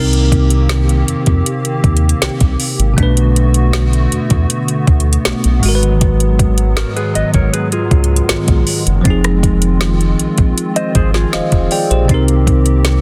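A straight 4/4 groove from an electronic R&B drum kit sits up front, its soft kick, woody snare, rim click and metallic hi-hats setting a moody, sensual tone in this contemporary R&B passage cut from a longer piece. Beneath it, a round analog bass with a deep, dark tone and fast attack holds the low end, while a bell-like tine electric piano plays bright, clean accompaniment over chords moving from Cm7 through Bm7, Abm7 and Fm7 before returning to Cm7. A hollow, flute-like pad with a vintage warble and ensemble chorus sustains gentle chords underneath. At 6.8 seconds a mellow, fingered electric guitar enters with compressed arpeggios carried by tape echo, playing until 12.1 seconds, and the electric piano adds a fill from 11.0 seconds. The mix is dry, dense and heavily limited in a modern style.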